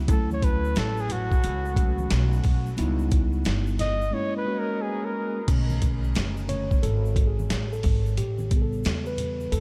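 A breathy flugelhorn carries the opening solo with light vibrato and a jazz inflection, its tone trailing into a diffuse ambient delay before it drops out at 5.5 seconds. This short cut from a longer jazz-hop piece moves at a laid-back 89 BPM in 4/4, its swung sixteenths giving a cool, mellow feel over chords that run from Dmaj7 through C#m7b5 to F#7, with a break between 4.1 and 5.5 seconds. From there the mellow tine electric piano, which has been playing clean, direct accompaniment from the start, takes over the solo over Bm9 and A7. Underneath, a gritty, compressed boom bap sampler-style kit sits up front with a thumpy kick, a medium-tuned snare, hi-hat and crash, sounding as if re-recorded in a large room. A woody, dark upright bass plucked on steel strings shares that forward position, while an egg shaker and congas played with soft hands add bright, small-room texture in the background, all wrapped in light reverb.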